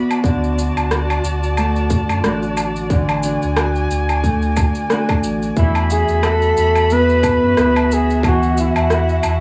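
A dark, bowed string quartet holds sustained chords with vibrato and portamento while a ringing, fingerpicked Celtic harp plays low-passed, tape-echoed arpeggios, opening this hopeful, swung folktronica excerpt, joined almost at once by an electronic woodblock, shaker and rim click, then a tight electronic kick and a round, deep sine sub bass, before a punchy solo flugelhorn carries the melody up front with light vibrato and tape echo from 5.6 s, the cassette tone on every part but the bass giving a homemade, small-room feel.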